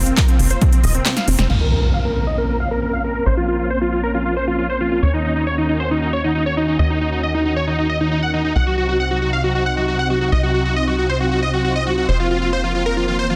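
Soaring and emotional, this uplifting trance passage, cut from a longer piece, moves in a straight 4/4 pulse over a chord sequence running from Fsus4 through Bbmadd9, Ebm7 and Cdim before returning to Fsus4. A huge, thick supersaw carries the melody up front, its detuned unison layers compressed and touched with vibrato, pumping against the sidechain while a filter sweep works on it from 1.5 seconds onward. Beneath it, a silky, string-like analog pad holds sustained chords with a slow attack, long release and ensemble chorus, its own filter sweeping across the passage, while a tight sequencer bass drives with short, plucked sawtooth and square-wave notes. The drums appear only briefly at the opening, an overdriven kick punching up front alongside a big-room kit of punchy snare, crisp hats, handclaps and crash cymbal, with a fill and a band accent as the kick drops out just before an electronic impact and riser land at 1.5 seconds. 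The whole mix sits in light reverb under a dense, heavily limited modern master, with a final riser rising at 12.9 seconds.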